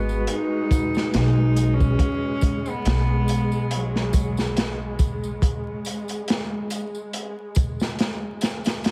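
Vinyl crackle and a small room ambience frame this smoky, brooding trip hop excerpt in G# minor at 70 BPM, built on a swung 16th-note groove and a G#m7 chord. A crunchy breakbeat kit with a tight kick and rolled-off top sits up front beside a woody, thumpy pizzicato upright bass with tube saturation, while a tambourine stays in the background and a lush bowed string section holds sustained chords with 12-bit sampler grit. A distant, nasal cello carries the melody through dub echo until 4.6 seconds, a clean tine electric piano with tremolo and tape echo plays accompaniment until 2.4 seconds, and the bass drops out at 5.4 seconds as the harmony falls away.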